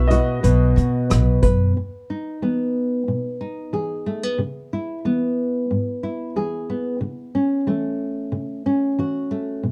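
This short excerpt of an acoustic folk-pop ballad in E major opens with a clear, slightly detuned upright piano carrying the melody between F#4 and D#5 in plate reverb. Alongside it are a fingerpicked nylon-string guitar, a thumpy pizzicato upright bass sitting up front, and an unplugged drum kit played with bundle sticks on hi-hat, punchy kick and rim click. At 91 BPM in a straight 4/4, the mood is hopeful and nostalgic. The piano drops out by 1.4 seconds and the bass and drums follow shortly after, leaving the guitar to play alone until 9.7 seconds. Its old strings give a woody, classical character as the harmony moves from B through Emaj7, C#m7 and A/C#, all framed by light reverb and a dark production.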